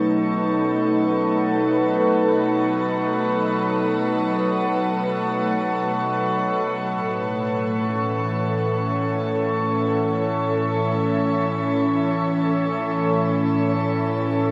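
In free time, this serene, luminous ambient passage in A lydian, tuned to A4 = 445 Hz and cut from a longer piece, drifts from a B chord to A at 6.9 seconds. An evolving, detuned wavetable pad sits bright and up front with slow-attack sustained chords and chorus, over a mellow, wave-folded organ-like drone thickened by ensemble chorus. A glassy, ethereal glass harmonica adds a beating texture up high, and the whole is bathed in a shimmer reverb with a 7.3-second tail.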